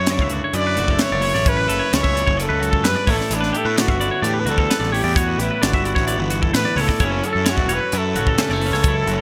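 Playful and intricate, this short math rock and midwest emo excerpt moves at 130 BPM in a straight 4/4, centred in D major. A breathy, close-miked trumpet carries the melody up front with a soft attack, light vibrato and a whispered, intimate pop-style tone, trailed by delay. Beneath it, a twangy clean electric guitar picks bright, compressed arpeggios, also with delay, while a twelve-string electric guitar picks a bright, twangy accompaniment further back in the mix. A fuzz-overdriven picked bass sits forward with a warm, amped tone, and a crisp fusion drum kit joins at 0.1 seconds with airy hi-hat, a punchy kick and a high-tuned snare. The harmony shifts from Dmaj9/F# to A9sus4 at 3.1 seconds and lands on F#m7 at 7.0 seconds, all framed by light reverb and a bright 1980s-style digital polish.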